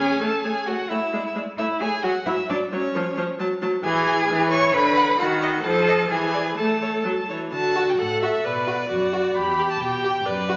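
A quick, graceful and cheerful classical-period string quartet movement opens with a close, smooth second violin, a rich viola standing up front, and a clear cello carrying the bass. At 0.2 s a distant, focused first violin enters with the melody, all four players bowing with vibrato, and at 7.5 s the music moves into a new section. The quartet sits in the wet reverb of a scoring stage with a soft, rounded top end, in this excerpt cut from a longer piece.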